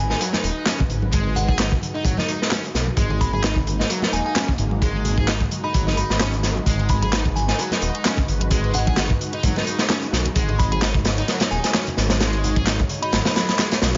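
Breakbeat at 130 BPM in G# minor, energetic and funky, built on a gritty, up-front acoustic breakbeat kit with a tight kick and medium-tuned snare, layered with very quiet electronic handclaps and bright hats from a garage kit entering at 0.7 seconds, and close, dry bongos and congas. A thick, menacing detuned saw bass sits forward beside a double-tracked fuzz guitar riff run through tube saturation and digital delay, while a lush, airy unison pad holds a G#m7 chord in the background, treated with chorus, phaser and sidechain pumping. A glassy, warbling FM bell melody with tremolo, digital delay and an AM radio tone floats behind, stopping at 13.6 seconds, all set in a small room with the sound capped below 7.5 kHz.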